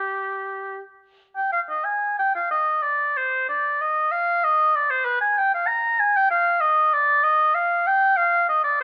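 A single oboe sounds up front in a large studio, carried by moderate reverb with a decay of about 1.5 seconds. This short classical excerpt is a baroque-style fantasia for unaccompanied oboe, solemn and flowing in mood, set in 3/4 at about 95 BPM. The beats fall unevenly and the phrasing moves with rubato, so the pulse bends freely under the line. The oboe has a warm, vintage tone with light vibrato, playing in a classical style across a range from G4 to Bb5. Tuned slightly below modern pitch at A4 = 437 Hz, it plays alone throughout the 8.8 seconds, shifting into a new passage at 1.5 seconds.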